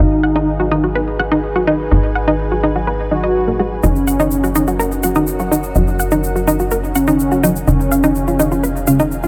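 A thick, warbling unison lead with tape echo and a filter sweep carries the melody over bright analog pluck arpeggios, a morphing wavetable pad, dark filtered dub chord stabs with phaser and lush chorus, a punchy, nasal sequencer bass, and a grainy egg shaker that enters at 3.8 seconds, in this hypnotic, cinematic melodic techno excerpt at 125 BPM moving from Abm through Gb to Db/F.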